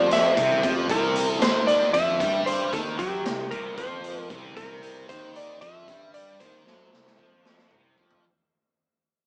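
Psychedelic rock in a lopsided 7/8, trippy and hazy, fading out across its whole 8-second span as if cut from a longer jam. An up-front, slightly broken-up slide guitar carries the melody through a tape echo until 7.9 s, compressed and fingered, while a reedy, overdriven combo organ with light vibrato holds very quiet sustained chords only for the opening 0.9 s. Underneath, a bright, double-tracked fuzz guitar grinds out a low riff through distortion and a phaser, joined by a round, overdriven picked bass. A raw garage kit of hi-hat, punchy kick, medium-tuned snare and toms sounds gritty and saturated with a rolled-off top, pumping in a bright stone room, and it closes with a drum fill from 6.7 s. The whole band plays live together in a wet stone room, giving a small-speaker character.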